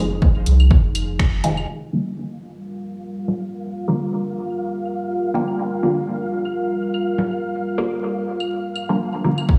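A dark analog pad, a filtered dub chord stab and a round sub bass open this short cut from a longer dub techno piece, set on an Fm7 chord at 123 BPM in 4/4 with a light 16th-note swing, in G phrygian and a hypnotic, cavernous mood. The pad holds moody, full-bodied sustained chords with chorus, while the muted, resonant stabs carry a phaser and dub echo. Both pump against a punchy, tape-warm electronic kick that sits up front. A faint drum machine adds finger snaps and hi-hat between 0.5 and 1.5 seconds, and electronic claves and congas with dub echo run from 0.6 to 9.5 seconds. After a band accent at 1.2 seconds, the sub bass and kick drop out and the chord moves to Gm7 as a long filter sweep begins. From 3.0 seconds a flickering, grainy granular texture floats high above the mix. The sound is steeped in a lush hall reverb, vinyl crackle and a low-pass filter, and the bass and kick return briefly at 9.5 seconds.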